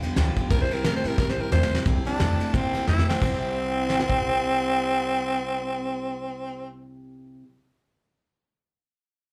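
Rockabilly cut from a longer piece, rowdy and rollicking at 177 BPM with a swung feel in C major, as a raspy, growling tenor saxophone takes the up-front solo melody from 0.5 seconds over a twangy, slightly broken-up electric guitar riff and a bright dreadnought acoustic guitar with finger squeak, both in the background with slapback echo, while a woody, thumpy pizzicato upright bass and a soft brush kit with a fat snare and tight kick drive things until the drums stop at 4.2 seconds, all heard through a club PA with light reverb.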